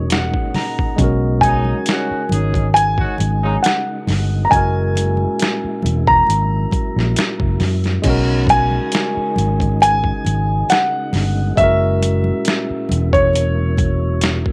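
A barky tine electric piano fill through a phaser opens this relaxed, soulful neo-soul R&B excerpt at 68 BPM in B major, alongside a round, dark fingered bass, a smooth background tonewheel organ with slow rotary speaker and chorus vibrato, and an up-front, polished concert grand piano melody carrying a slapback echo. A gritty, pitched-down boom bap kit with a thumpy kick arrives at 0.1 s, very quiet bright congas join at 0.5 s, and a distant, roomy horn section adds stabs from 1.4 to 3.6 s. The mix stays dry, with lightly swung sixteenths over F#9 and B69 chords.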